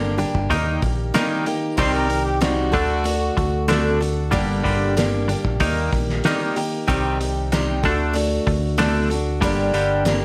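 A boxy, up-front parlour acoustic guitar, a bright, twangy twelve-string electric riff and a dark, round picked bass open this reflective, dusty folk rock and heartland rock passage over a Gm–Eb–Cm–D progression, joined at 0.2 seconds by a muffled, cloth-damped small-room drum kit with a fat snare, a tight kick and a gritty, saturated lo-fi character, while a mellow harmonica with scooped notes adds a brief second line from 1.8 to 3.7 seconds, all set in a light reverb.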